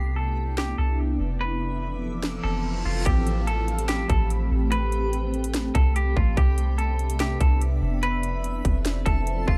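Atmospheric cloud-rap in A minor, this melancholic, ethereal hip hop cut moves at 145 BPM in 4/4 with a half-time feel, drawn from a longer piece. A shimmering ambient pad holds sustained chords from Cmaj9 to Fmaj7 and on to Am9, its granular, octave-up sheen thickened with chorus, phaser, reverb and sidechain pumping under a low-pass filter. A soft, round 808-style bass sits up front beneath it, while a clean, picked semi-hollow electric guitar carries a bright melody between F4 and B4 through a low-pass filter and tape echo. The trap drum kit arrives at 0.6 seconds with a hard-clipped kick, sharp snare and metallic hats, and a reverse cymbal and downlifter enter at 2.4 seconds, the cymbal leading into the move to Am9 at 3.1 seconds. A reversed, swelling texture lingers dreamily in the background, and the production overall stays dark and fairly dry.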